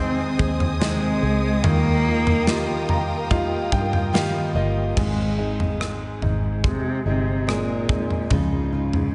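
A solo bowed cello carries the melody in this emotional, hopeful pop ballad, its warm tone shaped by vibrato, soft attacks and expressive portamento, with slapback and tape echo trailing each phrase. Alongside it, a brilliant concert grand piano with deep bass and short sustain provides accompaniment and adds a fill from 2.5 to 5.0 seconds. A full-bodied jumbo steel-string acoustic guitar, with fresh strings and audible finger squeak, picks arpeggios, while a dark, woody string section holds lush sustained chords until 4.9 seconds. A round, foam-muted vintage electric bass anchors the low end, and a polished modern drum kit enters at 0.4 seconds with a tight kick, medium-tuned snare, rim clicks, toms and bright crash cymbals, placed up front. A lush hall reverb gives the excerpt a big arena sound as the harmony moves from Ab/C and Ebadd9 toward Ab and Dbadd9 in the second section.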